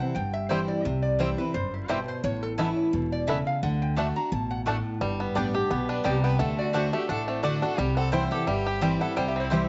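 Swinging along at a driving 173 BPM in 4/4, this lively bluegrass excerpt in D mixolydian sets a nasal, metallic slide lap resonator guitar melody with analog delay over a bright, full-bodied picked acoustic guitar up front, thumpy pizzicato upright bass, twangy, percussive banjo arpeggios, woody double-string mandolin stabs, and a smooth, clear fiddle second line with light vibrato that joins at 5.9 s, all wrapped in a lo-fi home cassette sound with light reverb, vinyl crackle and a dulled top end.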